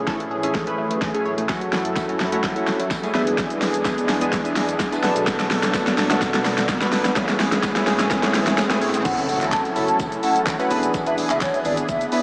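An overdriven pop drum kit sits up front in this bittersweet, driving dance-pop excerpt, its knocking kick, fat snare, hi-hat, handclaps, shaker and crash sounding layered and electronic, as if re-recorded in a small room. Beneath it, a smooth, detuned sawtooth pad holds sustained chords and glassy digital keys play accompaniment, both pumping from sidechain and shimmering with chorus. A crystalline wavetable pluck traces very quiet arpeggios, a jingly, close tambourine joins at 1.5 seconds, and a faint riser carries the long build-up and drum fill. At 9.1 seconds the drop arrives with an impact, a pure, hollow concert flute takes the melody with vibrato and analog delay, and a round, deep bass pulses in the background. The chords move through Amaj7, F#m7, E7 and Bm7, and the whole mix is soaked in a huge, dreamy reverb with a small-speaker character.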